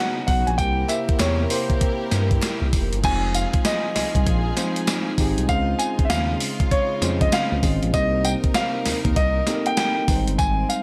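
A gated 80s digital drum machine sits up front with a thumpy kick, gated reverb snare, hi-hat, tambourine and crash, driving this bouncy, upbeat new jack swing R&B excerpt with a swung sixteenth-note feel. A smooth, gliding sawtooth synth bass with portamento and vibrato enters at 0.3 s, while a present, polished grand piano carries the melody through a delay. A bell-like tine electric piano provides accompaniment, and a dark, intimate string section bowed sul tasto holds sustained chords beneath, with a hollow, very quiet group handclap appearing briefly from 0.9 to 2.6 s.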